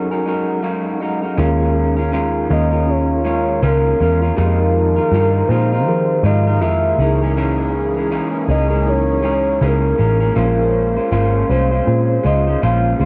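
Swung sixteenths in 4/4 give this laid-back, dreamy indie and bedroom-pop piece its lilt: a mellow tine electric piano fill opens over a dark, slightly broken-up electric guitar through a small old amp, then a round, punchy, foam-muted bass and a smooth, detuned analog pad enter at 1.4 s, and a soft octave-layered synth lead carries the melody from 2.5 s, captured as a home cassette recording with light reverb and a dulled top end.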